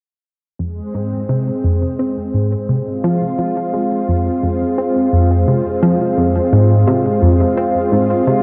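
Bathed in a dark, wet plate reverb, this short cut of expansive, cosmic, sequencer-driven ambient space music in F minor at 86 BPM fades in at 0.6 seconds as a tight, detuned sawtooth sequenced synth with a plucky filtered attack drives a chorused, delayed riff beneath a lush, airy unison pad holding sustained chords from an opening Fm harmony until 8.4 seconds.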